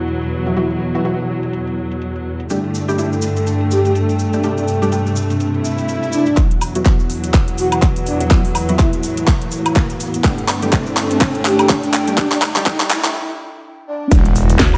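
Aggressive and swaggering, this bass house cut from a longer piece moves at 124 BPM in E minor, with a swung sixteenth-note feel and chords shifting between Esus2 and Gsus2. A rich, smooth studio string section holds sustained chords under a warbling, nostalgic pad with a dark lo-fi tint, both pumping against the sidechain, while a bold, detuned orchestra-hit-like synth stab punches through with reverb, delay and a filter sweep. An up-front garage kit brings a cracking snare, metallic hats, handclaps and woodblock, joined at 2.5 s by a grainy, bright tube shaker, and a breathy, flute-like synth lead with soft vibrato carries the melody from 3.7 s. At 6.4 s a punchy, layered electronic kick arrives as the build-up begins, with a drum fill, a filter sweep and a riser from background sound effects climbing toward a break. At 14.1 s an impact lands and a growling, thick FM bass bursts in, with a barely audible acoustic shaker and snare beneath, all set in a light small-room ambience.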